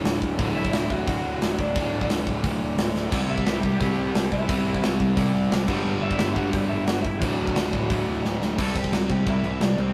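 A straight 4/4 punk rock beat from a big acoustic drum kit with a punchy kick and bright cymbals sits up front in this upbeat, rowdy cut from a longer piece, while an overdriven semi-hollow guitar and a sludgy distorted guitar churn out riffs over a growly fuzz-laden electric bass line in the background, a lo-fi lead guitar through a small cranked amp carries the melody from 0.6 seconds, a very quiet double-tracked thick fuzz guitar joins at 3.1 seconds, and a drum fill leads into a closing change at 8.6 seconds, captured in a rough rehearsal-room sound with light reverb.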